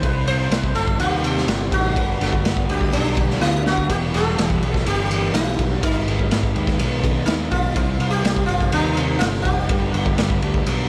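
Psychedelic rock at 124 BPM in a straight 4/4, this hypnotic, dark excerpt sets a bright, buzzing sitar melody with shimmering sympathetic strings and dub echo over a thick, double-tracked fuzz guitar riff with phaser, sitting in the background, and an overdriven fuzz bass reaching down to E1. A very quiet tonewheel organ holds sustained chords through a slow rotary speaker, while an up-front garage drum kit of punchy kick, medium-tuned snare and dark ride cymbal pumps in a small, gritty room and plays a fill at 3.4 seconds. The chords move from Cm through G, Emadd9 and G#m before returning to Cm, all in an echo-heavy mix with light reverb.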